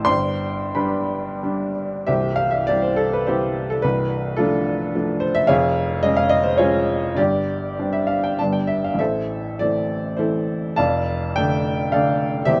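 Recorded close and in fine detail with a light reverb, this brief, hopeful fragment of a romantic character piece for solo piano sets a woody, vintage-toned upright up front with long sustain, its flexible rubato lilt in triple time ranging from deep bass to bright treble as the harmony drifts from G toward C and touches a surprising Db/F before settling on A minor and D minor.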